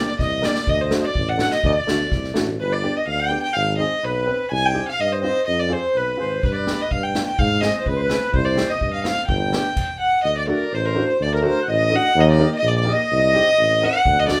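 A moderate studio reverb gives this short cut from a longer klezmer piece a bittersweet yet festive glow, moving at 126 BPM in a straight 2/4 and set in G phrygian dominant before shifting to D phrygian dominant at 10.2 seconds. Up front, a single bowed violin carries the melody with a pure, floating sul tasto tone and a soft attack that still sounds somewhat distant. A reedy accordion with slow beating plays a second line, while an intimate upright piano, woody and slightly detuned with audible action noise, supplies the accompaniment. A tuba in classical style anchors the bass with light vibrato and a roomy presence. A street-band drum kit, acoustic and polished with dark cymbals, a medium-tuned snare and a boomy kick, plays only in stretches, from 0.2 to 2.5 seconds and again from 6.4 to 9.9 seconds, briefly returning at the very end.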